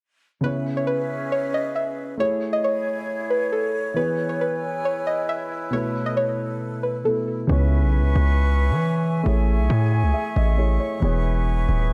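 Dark and brooding, this half-time hip hop excerpt at 136 BPM in C# minor opens with a soft, round, chorused pluck melody over a dark concert grand piano and a breathy, unsteady flute group holding sustained chords, until a distorted, up-front 808-style bass arrives at 7.5 seconds as a filter sweep moves across the piano, which adds a fill at 9.7 seconds, all in light small-room ambience.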